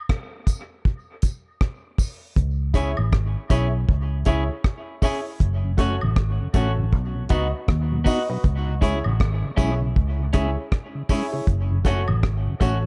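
A dark, warm production with light studio reverb opens onto a spacious, deep dub reggae groove in 4/4 with a swung sixteenth-note feel, cut from a longer piece. The deep reggae drum kit starts almost at once, dry and smooth with a tight kick, rim click and hi-hat sitting up front, and a background layer of tambourine and woodblock, with maracas and group handclap in a live room, trails dub echo behind it. At 2.4 seconds the vintage muted fingered electric bass enters, round, punchy and foam-muted, and it sits up front over a harmony that moves from C# minor through F# minor and B. Just after, a woody upright piano with short sustain plays echoing stabs, joined by an electric guitar at the edge of break-up, picked and compressed, also carrying dub echo. At 5.6 seconds a soft, flute-like tonewheel organ fills in quietly from the background, its slow rotary speaker and chorus vibrato adding a gentle shimmer.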